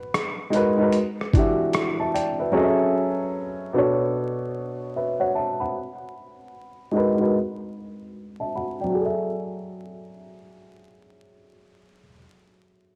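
Vinyl crackle and cassette haze sit under a light digital reverb in this hazy, reflective lo-fi hip hop excerpt with a swung sixteenth-note feel. An intimate, woody upright piano carries minor-ninth chords up front, its action noise audible and its tone shaped by a low-pass filter sweep until 8.9 seconds. A gritty, compressed sampler-style soul kit of thumpy kick, hi-hat and rim click, sounding re-recorded in a large room, appears only briefly, from 0.1 to 2.4 seconds.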